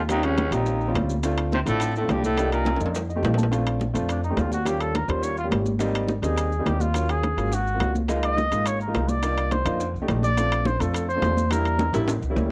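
A brisk, straight four-beat groove drives this lively, sunny Afro-Cuban jazz excerpt: close, dry congas with bright, high-tuned skins under hard hands sit in the background, ringing metal-shelled timbales cut through, grainy maracas add a mellow shimmer, and soft-handed, low-tuned bongos sound round and very quiet from a distant, large space. Up front, a woody pizzicato upright bass on steel strings anchors the low end, while a natural-sounding baby grand piano fills in rich extended chords and adds a short fill just before the change of section. A breathy, mellow trumpet carries the melody with vibrato and scooped notes, sounding distant and roomy yet prominent, and a vintage baritone saxophone with vibrato plays a second line beneath it until 2.8 seconds. After a drum fill, the trumpet launches into a jazz solo at 3.5 seconds over a harmony that moves through colorful major ninth, thirteenth and minor eleventh chords, dropping out at 11.9 seconds as another drum fill rounds off the passage. 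The horns and piano carry a slightly worn cassette-tape quality, and the whole performance sits in a modest small-room ambience with the intimate feel of a home recording.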